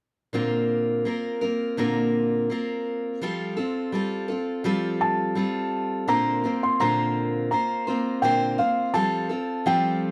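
Gentle and pastoral, this short acoustic folk excerpt at 84 BPM in 4/4 sets a picked steel-string acoustic guitar, up front with audible finger squeak, cycling between Bbadd9 and Fadd9 from 0.3 seconds, joined at 5.0 seconds by a felt-muted upright piano carrying a soft, dark, intimate melody high in its range, all caught by close, detailed microphones with light reverb.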